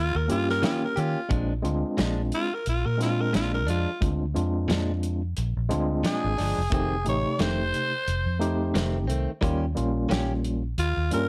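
Rollicking and soulful, this straight-eighth soul blues excerpt moves at 89 BPM in Bb mixolydian, with a raspy, growling tenor saxophone taking a breathy solo over the whole 11.3 seconds, colored by a slapback echo. A round, foam-muted fingered electric bass sits up front from the start, and at 0.3 seconds a barky, overdriven tine electric piano with fast tremolo joins alongside a soul drum kit with a fat snare and tight kick. A bright, clean electric guitar, recorded direct, adds picked stabs from 0.6 seconds as the chords move from Eb7 to Bb7, F7 and back to Eb7, all in a light reverb.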